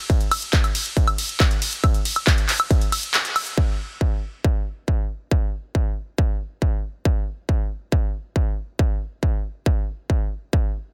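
Cut from a longer trance piece at 138 BPM in a straight 4/4, this driving, hypnotic drop opens with a distorted, layered electronic kick up front beside an overdriven drum and bass kit of handclaps, bright hi-hats, ride cymbal and woodblock with a small-room tone, and a band accent lands at 3.1 seconds as the kick briefly falls away before the kit stops at 3.6 seconds and the kick returns alone, dry and densely limited, until 10.6 seconds.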